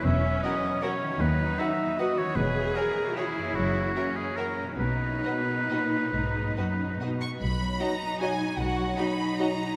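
Festive and elegant, this orchestral ballroom waltz in B major sways in 3/4 at a rubato 128-167 BPM: a lush violin section carries the high melody over a very quiet second violin line, and a clear, up-front oboe sings a second line until 7.0 s. Bright bowed violas and ringing, fingerpicked harp arpeggios fill the accompaniment, while rich cellos and smooth, distant double basses anchor the bass. A very quiet clarinet and a background bassoon join at 7.8 s, and the whole passage sits inside a vast, echoing cathedral space.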